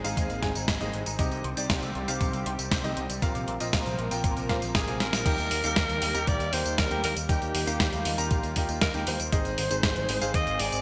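Bathed in a lush hall reverb with bright 1980s-style digital sheen, this romantic, playful italo disco excerpt in Eb major moves at 118 BPM, where a clean 12-bit drum machine with gated reverb sits up front over a thumpy electronic kick, a tube-saturated picked bass with an envelope filter, brilliant grand piano stabs, a thick detuned sawtooth pad holding chorused, phased chords in the background, and twangy envelope-filtered guitar arpeggios that stop at 5.2 seconds, just after a raspy, growling jazz-style alto saxophone takes the solo melody at 4.8 seconds and a drum fill at 5.0 seconds leads into the next section.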